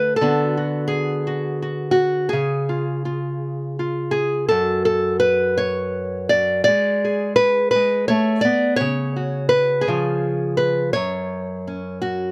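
A lilting 6/8 pulse moves with a free, rubato feel, stretching and relaxing as this short folk fragment unfolds over roughly 12.3 seconds. A single nylon-string guitar carries the whole piece, fingerpicked with a dark, small tone that sits up front, spanning from a low F#2 to a high D5. The mood is wistful and melancholic, as the harmony drifts from Bm/D to C# and briefly passes through a moment of undefined harmony before settling on G#dim. A C#sus4 resolves to C# near 9.9 seconds, and the passage comes to rest on a bare F#5 chord as it is cut from the longer work. Close, detailed miking and a dry room make every finger squeak on the strings audible, giving the performance an intimate, in-the-room presence.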